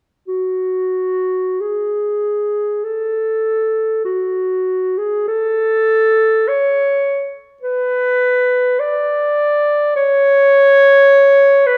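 Unfolding in a free, rubato pulse over a loose 4/4, this fragment of a classical piece for solo clarinet feels mournful and yearning. The clarinet plays from 0.3 to 11.8 seconds, moving between F#4 and D5 with a mellow, distant tone that sits up front yet sounds roomy. A wet recital hall reverb with a 1.7-second tail surrounds the expressive line.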